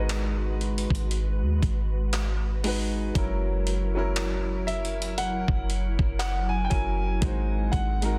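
This short excerpt of late-night contemporary R&B opens with a concert grand piano carrying a high melody through tape echo, while a second grand piano plays a clear, present accompaniment beneath it. A glassy FM pad holds sustained chords with a slow attack and long release, its ensemble chorus and built-in reverb lending an ethereal, mellow haze. A deep, round 808-style bass sits up front, its soft sine tone decaying after each note. From 0.1 seconds a dusty, sampler-style soul kit joins with handclaps, hi-hat and a thumpy kick, sounding gritty and compressed, as if re-recorded in a large room. At a slow 59 BPM with a swung sixteenth-note feel in G# minor, the harmony moves from G#m7 to F#7 and then to G#7, and the dense, heavily limited mix carries a longing mood.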